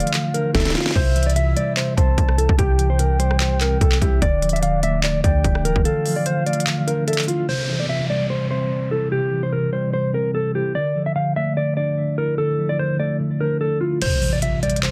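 A dense, heavily limited modern mix with little reverb frames this eerie, brooding trap excerpt at 147 BPM in a half-time feel, moving between Dmadd9 and C. An up-front, dark, fingered electric guitar carries the melody through a low-pass filter and tape echo over a mellow tine electric piano heard as if through built-in speakers, while a round, detuned, octave-layered synth lead with chorus and vibrato adds a second line until 7.5 seconds. Electronic trap drums with a hard-clipped kick, sharp snare and crisp hats play in the opening alongside a deep, boomy sine 808 bass, then stop as an electronic downlifter enters at 7.5 seconds, with the kit returning under an impact at 14.0 seconds.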